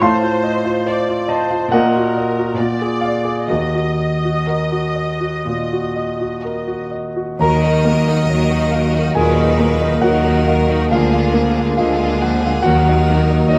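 An up-front concert grand piano with a clear tone and deep bass carries the lyrical melody of this passionate romantic passage for piano and orchestra, flowing in rubato over smooth, even violas and a lush, bright cello section in the background, while two intense violin sections with vibrato join at 0.9 seconds on melody and a second line, and at 7.4 seconds a dark French horn section adds sustained chords as an expressive, rich double bass section deepens the low end, all bathed in the generous reverb of a scoring stage.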